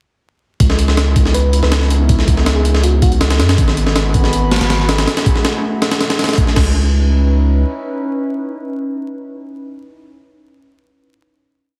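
This dark, atmospheric drum and bass piece, rooted in jungle, opens at 0.6 s with a gritty, heavily chopped breakbeat and a deep, saturated sub bass arriving together at 161 BPM in C# minor. The sampler-style kit sits up front, pitched up and compressed, with a thumpy kick and a high-tuned snare carrying the sound of a large room, while the thick sine bass holds long gliding notes. A nostalgic, warbling tape-like pad of detuned sawtooth and triangle tones fades in with sustained chords through chorus and reverb, moving from C#m9 to G#m7 and F#m9. In the background, a sparkling FM electric piano adds short, bell-like phrases trailed by dub echo, and later a glassy texture of drifting overtones holds a calm high note. After the drums stop at 6.7 s, the pad rests on a final C#m9 chord, and the whole track is colored by heavily compressed radio-like sound, vinyl crackle and a light digital ambience.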